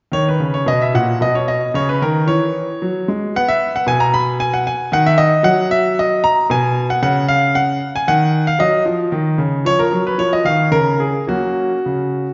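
A clear, natural grand piano opens at 0.1 s and carries this baroque-style suite movement alone, sitting up front in the sound. The mood is flowing and serene, moving in 3/4 at 113 BPM with a rubato feel that lets the pulse breathe. The piece begins in B major and shifts toward F# major from 6.5 s, with harmonies passing through D#m, Bsus2, C#add9 and D#m9 before settling on F# near 11.3 s. The playing spans from A#2 up to B5, giving the solo line a generous range. A wet scoring-stage reverb surrounds the piano with a 1.7-second tail, and the highest treble is rolled off for a mellow sheen. This is an excerpt from a longer work, and it ends at 12.3 s.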